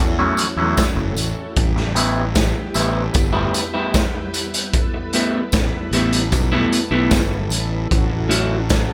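A gritty, boomy-kicked garage drum kit pumps up front from 0.4 seconds alongside a slightly broken-up, phaser-tinged picked guitar riff and a round, punchy fuzz bass, while a warbling, chorused organ-string pad and a jingly tambourine sit in the background of this hazy, kaleidoscopic psychedelic rock excerpt at 76 BPM, moving from A6 to Em and back.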